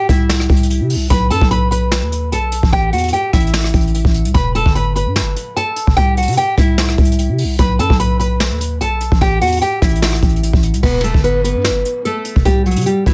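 Hip hop trap in a melancholic, eerie half-time feel, with an up-front, full-bodied nylon-string guitar fingerpicking the melody through tape echo over a growling, buzzy 808-style bass and a brushed jazz drum kit with dark cymbals and a boomy kick, all in a dry studio sound as the chords cycle through C, B5, A5 and E5 across this short section cut from a longer piece.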